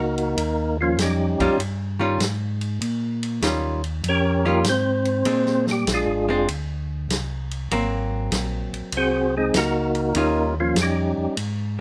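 A swinging 4/4 groove drives this bluesy soul jazz organ trio excerpt, set by a vintage acoustic drum kit of tight kick, medium-tuned snare, hi-hat and ride cymbal that enters at 0.2 seconds in a natural studio room. Up front, a round, percussive tonewheel organ with key click and third harmonic percussion carries the solo melody through a slow rotary speaker, while a mellow, dark organ voice plays the bass line through its own slow rotary. From 1.4 seconds a clean, compressed hollow-body archtop guitar, picked and amplified, adds accompaniment as the chords move from Eb9 to Bb9 and Ab9 before returning to Eb9, under light reverb.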